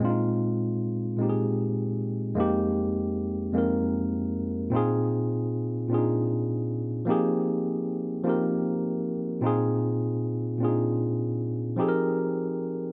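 Sultry and yearning, this short R&B fragment, cut from a longer piece, unfolds in a slow, straight 6/8 lilt. A lone tine electric piano carries everything from 0.0 to 12.9 seconds, ranging from F2 up to Bb4. Its tone is worn, warm and slightly out of tune, lightly overdriven and heard through built-in speakers, sitting up front. The harmony rocks between Bb9sus4 and Fm11, opening on the suspended chord before the second section settles in at 2.4 seconds and continues the same alternation. Recorded outdoors with little reverb, the sound is dry and close.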